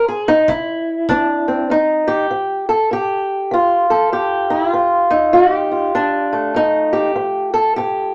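Laid-back and soulful, this short acoustic country blues excerpt moves at 99 BPM in a relaxed swing, centred on F mixolydian. A fingerpicked steel-string guitar carries the melody up front, with a dark, woody, boxy tone from old strings. A punchy, brushed kick drum sits in the background from 0.5 to 1.3 seconds, and the guitar settles onto an F7 at 1.7 seconds, all under a light reverb.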